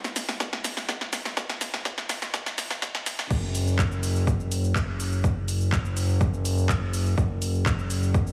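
Progressive house with a dreamy, emotional pull, this short excerpt opens with a build-up and drum fill from a house kit of punchy snare, hi-hat, shaker, handclaps and crash alongside an overdriven, layered electronic kick, then drops at 3.3 seconds into a fat, nasal, detuned sawtooth-and-square analog bass with sidechain pumping, all wrapped in light digital reverb and a heavily compressed, radio-like sheen.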